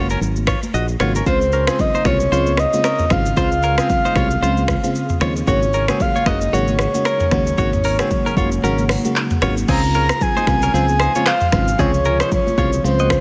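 Afrobeats excerpt at 114 BPM in Db major with a joyful, romantic feel and swung sixteenths, built on a glassy FM electric piano with chorus, a twangy clean electric guitar riff through digital delay, a growly fingered bass, an overdriven, up-front afro-pop kit with deep kick, snaps, claps, shaker and toms, and soft, close congas, joined at 1.3 seconds by a breathy, flute-like synth lead with vibrato and at 2.7 seconds by a very quiet, blurred granular cloud pad, while the kick drops out from 8.6 to 9.7 seconds as the chords move between Ab9sus4 and Dbmaj7 in light reverb.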